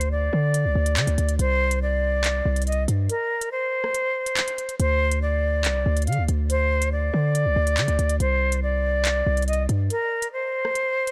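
A dark, warm digital ambience surrounds this menacing slice of drill-flavoured hip hop, cut from a longer piece and moving at 141 BPM in 4/4 with a half-time feel. Up front, a silver concert flute carries the melody between Bb4 and F5, its airy, metallic tone marked by vibrato, tongued notes and a slightly unsteady quality that adds to the ominous mood. Beneath it, a distorted 808-style bass sits equally forward, aggressive and weighty, with a sine core, a noisy layer, a fast attack and decaying notes reaching from C2 to D3. A drill drum kit of crisp hi-hats, handclaps and rim clicks runs throughout, electronic and produced, but re-recorded in a large room. The harmony moves from C5 to Csus2 and back, with breaks at 3.1 seconds and 9.9 seconds, where the bass drops out for the closing stretch.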